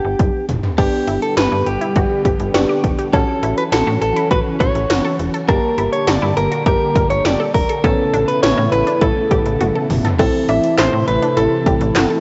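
Driving straight 4/4 at 102 BPM, this upbeat, bright synth-pop fragment opens with a clean, direct-recorded electric guitar melody with tape echo, a snappy slap-like FM bass and a glassy, bell-like FM electric piano with chorus. At 0.2 seconds a drum fill arrives from punchy, overdriven 80s electronic pad drums with gated reverb on snare and toms, metallic hats and handclaps up front. At 0.8 seconds a mellow string machine of cellos joins, holding sustained chords, along with a squelchy, resonant blip pluck playing phased arpeggios. All move through G, A6, Gmadd9 and Aadd9 before settling on Am at 10.2 seconds, in a lush hall reverb with the dulled, lo-fi haze of a home cassette recording.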